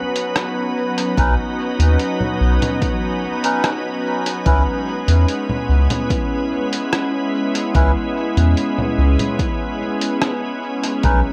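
Echo-heavy and lightly reverberant, this meditative, deep ambient dub excerpt opens on a pure, detuned organ-like pad of sustained chords with ensemble chorus, joined at 0.2 s by muffled, tape-toned sampler-style congas, hi-hat and rim click under dub echo, before a round, up-front sub bass, a punchy overdriven electronic kick and reedy, breathy melodica stabs with dub echo all arrive at 1.2 s, the harmony moving from Badd9 to C#m7 at 4.5 s.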